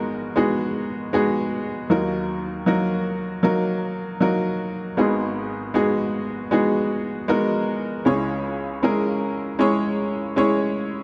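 Dark production and a lush hall reverb surround a clear, woody, slightly detuned upright piano played solo and up front in this brief, longing and heartbroken pop cut at 78 BPM in G# minor, its short-sustained voicings moving through G#m7, D#m and C#m.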